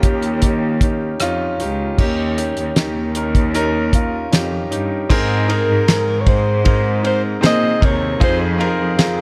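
In a studio ambience, this hopeful, heartfelt pop ballad excerpt sets a mellow alto saxophone singing the melody with vibrato and scooped notes over an intimate concert grand piano with audible action noise and long sustain, a bowed cello section of gut-string tone carrying the bass, and a dry 70s drum kit with a fat snare and dark cymbals, all playing together for the full 9.2 seconds as the harmony moves from Eb7 to Abadd9 at 5.1 seconds and to Fm7 at 8.2.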